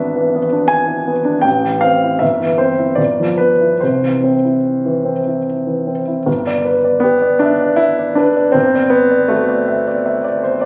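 Passionate and hopeful, this fragment of a romantic classical character piece for solo concert grand piano sways in a rubato 3/4 at roughly 70-84 BPM, its intimate, up-front tone rich in deep bass and audible action noise as the harmony turns from C major to G major at 6.3 s, heard through a moderate recital-hall reverb captured on a phone in the room.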